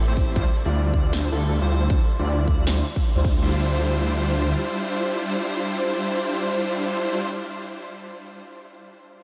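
A bittersweet, dreamy future bass fragment opens on huge, bright supersaw chords, a filter sweep running through them, over a thick, saturated detuned saw bass and a soft, airy lead that spins high arpeggios with vibrato and chorus. A punchy, up-front electronic kick arrives almost at once, and by 1.1 seconds a big-room dance kit adds a punchy snare and crash cymbal, both dropping out at 3.3 seconds as the half-time groove gives way to a second section. The chords, bass and lead all breathe with sidechain pumping, while tape echo trails the lead and the low-pass-filtered supersaw riff, which voices a lush Dm11 early on. The bass falls away at 4.6 seconds, leaving the bright chords and lead to hang in a moderate but huge ambient reverb that soaks the whole mix in haze.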